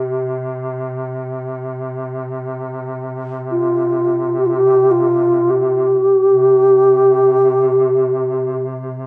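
A pure, mellow wooden-headed alto flute sings an expressive, up-front melody with vibrato and crisp attacks over a low, distant duduk drone in this brief, free-time fragment of a solemn, longing Caucasian lament. The duduk sounds warm and roomy, with vibrato and scooped notes in folk style. A moderate recital-hall reverb gives the church-like space its bloom, and the top end is softly rolled off; the flute falls away at 8.6 s, leaving the duduk to hold until 9.1 s.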